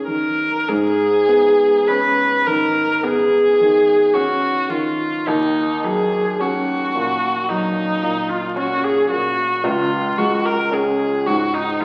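Heard through the crackle of a very old 78 rpm record and the wet reverb of a recital hall, this brief, mysterious and hazy passage from a longer impressionist classical piece unfolds with a free, rubato feel. A clear, smooth viola carries the melody up front with even bowing and vibrato, while a warm baby grand piano, also present and close, supplies low accompaniment. The harmony drifts from G#madd11 to D#m7 at 5.3 seconds and settles on C#5 at 9.6 seconds.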